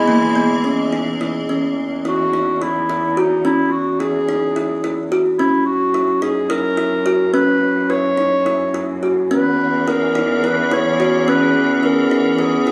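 Heard through a phone in the room, this chamber music excerpt carries a club-like reverb. It is a restless yet hopeful contemporary instrumental in an uneven 7/8 metre with a straight feel. A mellow, smooth-topped clarinet carries the melody up front throughout, played in a classical style. A woody kalimba sits just as close beside it with short, dark, thumbnail-plucked arpeggios. Beneath them, a muted cello, bowed con sordino by one player, holds a veiled, distant bass with vibrato and portamento. A vintage-sounding French horn adds a second line and an icy, crystalline glass pad with chorus and airy shimmer holds sustained chords. Both drop out early and return near the end, the horn at 9.3 seconds and the pad just after.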